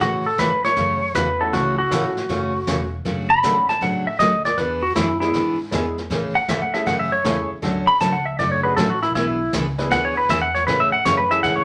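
A lilting swing feel in four, played on brushes over a boomy kick and a woody, growly pizzicato upright bass, drives this playful western swing excerpt from a longer piece. A twangy, compressed, up-front clean lap steel guitar weaves a slide second line throughout, while a full-bodied picked dreadnought acoustic guitar, finger squeaks and all, picks out jazzy sixth, seventh and major-seventh chords beneath it. A brilliant upright piano with audible action noise joins at 1.4 seconds, and a club-sized reverb gives the small band an intimate, live feel.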